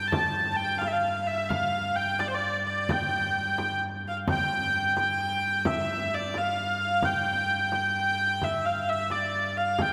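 Bathed in a wet church reverb, this festive, ancient-sounding medieval dance excerpt moves in 6/8 at 87 BPM, with a clear, airy, earthy hurdy-gurdy carrying the melody up front from C5 to A5, a smooth principal-stop pipe organ holding a low G2 drone beneath, and a close, dry frame drum entering at 0.1 s before the tune shifts into a new section at 4.3 s.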